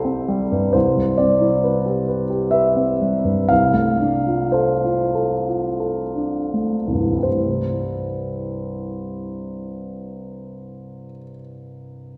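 A concert grand piano opens the recording alone on a C6 chord, its tone warm and polished, with a deep bass and a present, up-front placement. This is a serene, luminous piece of impressionist classical solo piano in C major and 3/4 time, played with a free, rubato feel at a slow tempo between 38 and 67 BPM. The harmony drifts from Cmaj9 to Dm7/C, and the tempo slows through the first 7.3 seconds before the music settles onto a plain C chord as a new section begins. The piano spans from C2 up to F5, its low notes giving the chords a rich foundation. A wet concert hall reverb with a long decay surrounds the instrument, lending the short passage, cut from a longer work, a spacious, glowing atmosphere.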